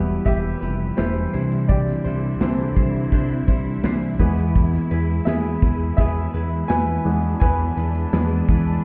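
Piano-driven pop at 84 BPM in 4/4 with a straight feel, driving and dramatic, this short excerpt moving from Em through Cadd9 to E. A polished baby grand piano carries the lead throughout, joined by a clean, compressed direct-recorded electric guitar riff bathed in lush chorus, a fat, detuned sawtooth analog bass sitting up front, distant bowed strings holding sustained chords in the background, and a dark, tight acoustic drum kit of kick, snare and hi-hat entering at 0.3 s. The whole mix sounds muffled, as if heard through a wall, with a stone room reverb around it.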